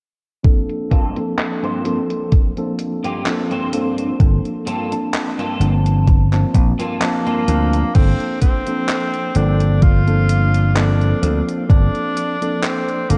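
Vaporwave at 64 BPM in G minor with a lightly swung 4/4 feel, woozy and melancholic, built on a Gm11 chord and soaked in lush hall reverb with a dark cassette-tape haze. A mellow tine electric piano with lush chorus and analog delay sits up front beside a thumpy electronic kick, while a detuned 8-bit drum machine adds filtered hi-hat, handclaps and crash cymbal. A slightly broken-up picked electric guitar carries a riff through a filter sweep from 0.9 to 7.8 seconds, a punchy, tube-saturated slap bass arrives at 4.2 seconds, and an edgy tenor saxophone with light vibrato, sampler grit and tape echo takes the solo melody from 7.0 seconds.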